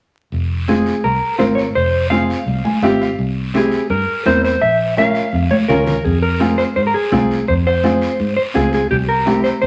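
A danceable, fiery cumbia in straight 4/4 at 168 BPM in F minor, cut from a longer piece, where raspy guiro and bright, hard-hand congas play alongside a round, foam-muted fingered electric bass while a dark, clean electric guitar carries the melody through spring reverb over woody, short-sustain upright piano chords moving from Fm through C and Bbm, with a piano fill at 2.5 seconds, a drum fill leading into a very quiet soft-beater bombo entering at 6.0 seconds, and vinyl crackle over the wet room.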